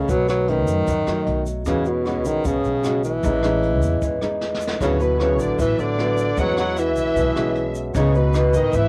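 Smooth and intimate, this short bossa nova excerpt moves at 153 BPM in 4/4, with a breathy, mellow tenor saxophone carrying the melody up front, using subtone, light vibrato and scooped notes over chords such as B9, E69 and Amaj7#11. Thumb-plucked nylon-string guitar and a woody pizzicato upright bass support it, while a distant, roomy brush kit with a boomy kick and rim clicks plays a fill at 4.4 s, and a grainy, bright tube shaker sits far back in the mix. At 4.8 s a lush bowed violin section joins with a smooth second line, and the guitar, drums and strings carry a cassette-tape colour within a lightly reverberant home recording.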